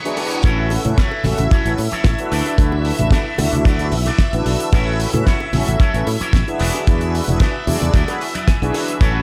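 Nu-disco in A major at 112 BPM with a sunny, feel-good mood, this short cut opens on a brief break in which a twangy envelope-filtered guitar riff with lush chorus and delay, round, detuned synth brass accompaniment with vibrato, and a vintage string machine whose slow-attack sustained chords carry 12-bit sampler grit and sidechain pumping all sound from the start. A damped 70s kit with fat snare and hi-hat comes in at 0.1 seconds and very quiet soft-handed bongos and congas at 0.2 seconds, before a dry, tight kick and a punchy fingered bass arrive up front at 0.4 seconds as the harmony moves through A6, D69 and E7 changes, and a clean electric guitar fill appears at 7.9 seconds.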